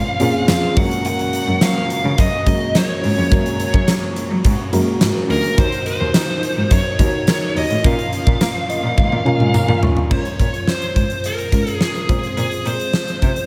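Urgent and moody, this 1980s-style pop fragment in Bb minor moves at 106 BPM as a dark, distorted high-gain lead guitar carries the melody over a biting overdriven guitar in the background that drops out at 10.6 seconds, a round, warbling FM electric piano with chorus and a fill at 8.4 seconds, a bowed cello bass with vibrato, a huge arena drum kit with bright cymbals, a fat snare and a fill at 9.0 seconds, and a very quiet, jingly tambourine, all bathed in a dreamy, reverb-soaked hall sound.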